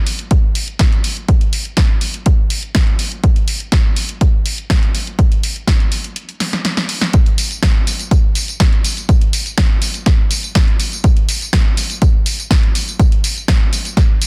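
House groove at 123 BPM, groovy and sensual, where a punchy analog drum machine's hi-hat, snare and tambourine sit up front beside a prominent electronic kick, both carrying a large-room character in an otherwise dry, dense, heavily limited mix, as a filter sweep builds from the opening through a break from 6.2 seconds and a drum fill from 6.4 seconds before the drop lands at 7.1 seconds.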